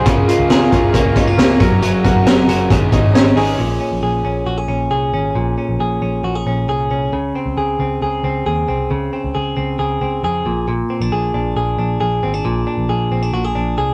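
Breezy and bright, this short cut of jangly indie pop moves at 135 BPM in a straight 4/4. In the opening 3.6 seconds, a full band plays: an up-front vintage drum kit with a punchy kick and high-tuned snare, a warm overdriven garage guitar and a reedy, slightly out-of-tune electric piano set in the background, and a smooth, chorused analog pad holding sustained chords over changes from Db6 through Gbadd9 to Absus4. At 3.6 seconds the drums, garage guitar, piano and pad drop away. That leaves a twangy, compressed clean electric guitar, recorded direct with a warbly pitch drift, playing arpeggios up front over a dark, round, foam-muted picked bass. The second stretch moves through Bbm7, Dbmaj7(no3) and Bb7 until 13.9 seconds. The whole take has the rough feel of a rehearsal room, with a short, wet booth ambience and a saturated glow.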